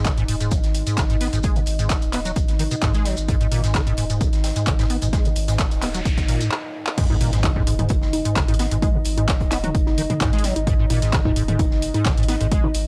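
A squelchy, overdriven square-wave acid riff opens over a round, deep analog bass and a dark, detuned pad pumping against the punchy kick in this raw, hypnotic 130 BPM acid house excerpt, with a tape-warm drum machine of claps, congas, toms and crash, a faint gritty fusion kit, a grainy shekere that drops out at 6.5 seconds, and a very quiet noise sweep leading to an impact as the drop lands at 7.0 seconds.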